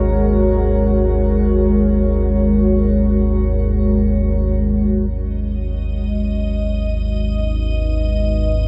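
A deep, ominous rumbling drone anchors this dark, desolate ambient fragment in free time and G# minor, with a moody, detuned analog pad holding sustained chords that shift from F#add9/G# to G#m at 5.1 seconds, a metallic singing bowl ringing very quietly in the opening moments, a filter sweep moving through the drone, and an icy, crystalline glass pad drifting in at 5.9 seconds, all suspended in a huge reverberant space.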